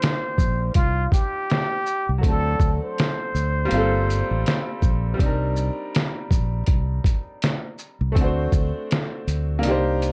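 A breathy, plunger-muted trumpet sings a jazzy solo line with vibrato and a wah-wah tone over bright, woody upright piano and an up-front, sampler-style drum kit of thumpy kick, fat snare, hi-hat and shaker, muffled and pitched down as if re-recorded in a large room. Fingered electric bass joins at 0.4 seconds with a punchy, direct-and-amped tone, and the trumpet drops out at 5.2 seconds, leaving the vintage-sounding piano, bass and drums to cycle through Cm9 and D7 in a swung, nostalgic lo-fi hip hop groove. Light reverb and a cassette-tape haze give this melancholic excerpt its faded glow.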